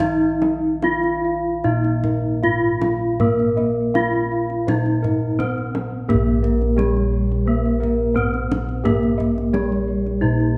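Javanese gamelan in pelog barang on Bb, moving at a straight 71-87 BPM in 4/4 with a shimmering, ceremonial mood, cut from a longer piece and shifting into a new section at 6.1 seconds. A dark, up-front bronze metallophone struck with a horn mallet carries the melody, its paired tuning producing shimmering beats, while bossed gongs played with padded beaters give a round, mellow bass, and a brighter, airy set of bossed gongs spins arpeggios alongside a soft metallophone with padded disc mallets sitting in the background. A deep kendang keeps the percussion running throughout, and the ensemble sits in a wet recital hall reverb.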